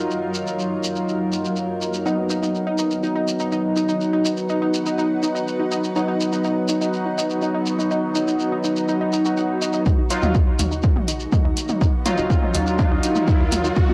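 Edgy, nasal sync-sweep polysynth stabs sit up front in this dark, hypnotic melodic techno excerpt, colored by chorus, analog delay and sidechain pumping over a cloudy, blurred granular pad and a grainy, close shekere, with a round, detuned analog pluck arpeggio joining at 2.1 seconds. At 9.9 seconds a build-up begins as a tight, driving sequencer bass arrives alongside a punchy, overdriven electronic kick and a deep house kit of hi-hat and toms, the drums carrying a cassette tape character. An electronic riser enters in the background at 11.3 seconds, and the whole excerpt has the light reverb of a home cassette recording.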